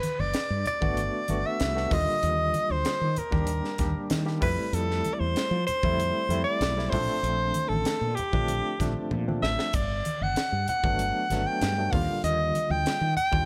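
Slick and bright, this electric jazz fusion clip moves at 96 BPM in a straight 4/4, cut from a longer piece. A soprano saxophone carries the melody up front from the start, its tone warm with vibrato and subtone in a jazz style, ranging from G4 to G5. A crisp drum kit with a high-tuned snare, punchy kick, hi-hat, toms and crash cymbal sounds in a small, pumping room, joined by low-tuned congas with thick skins and soft hands sitting in the background. A mellow fretless bass, dark and round, enters at 0.2 seconds, and a barky tine electric piano comes in at 0.8 seconds, clean and bright with fast tremolo through a combo amp. The harmony glides through lush major-ninth chords, Gmaj9, Ebmaj9, Fmaj9 and Bbmaj9, returning to Gmaj9 at 9.7 seconds just after a drum fill, all bathed in light reverb.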